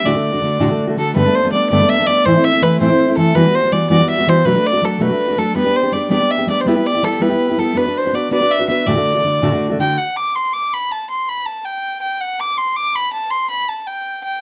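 A rough home-demo sound with wet studio reverb frames this bright, rollicking Celtic jig in D mixolydian at 109 BPM in 6/8, where a nasal, boxy bowed fiddle with light vibrato carries the melody up front throughout while a full-bodied, fingerpicked jumbo steel-string acoustic guitar accompanies through chords like Gadd9, Emadd9 and Bm7 until 10.0 seconds, leaving the fiddle alone for the final stretch of this excerpt.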